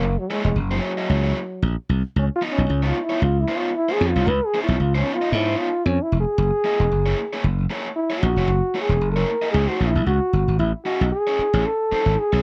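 A dry, close 1970s-style studio sound frames this energetic, playful funk excerpt with lightly swung sixteenths, where a dark, breathy trombone with scooped notes takes a jazz-style solo up front over a growly, punchy slap bass and a raw, overdriven, picked garage guitar moving through Gb9 and Db9 chords, until the solo ends and the harmony shifts to Amaj7 at 10.6 seconds.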